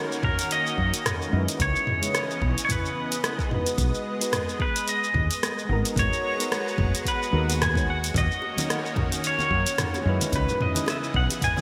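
Smooth, warm sunset chillout with a swung deep house drum kit and a deep electronic kick beneath a twangy slide pedal steel melody, a growly, round fretless bass up front, mellow phaser-tinged synth keys and a thick, detuned sawtooth pad, all bathed in a lush hall reverb and bright 1980s-style digital sheen, with ringing bongos and congas joining in the background at 8.4 s.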